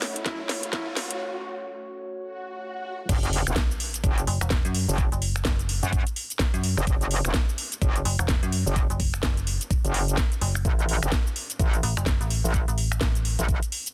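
A saturated, metallic wobble bass with chorus drives this swaggering, aggressive bass house excerpt in F# minor at 127 BPM, arriving with the drop at 3.1 seconds and soon doubled by an overdriven, digital FM bass, both pumping against a knocking, tape-warm electronic kick. Before that, a riser, swell and sub drop lead the build-up over a brief ethereal airy pad, with a very quiet bell-like FM electric piano note and smooth-topped jazz horn stabs flickering near the start. A garage kit of cracking snare, hi-hats, finger snaps, shaker and crash sits up front over a dark, detuned analog pad treated with phaser, in a dense, dry, heavily limited mix.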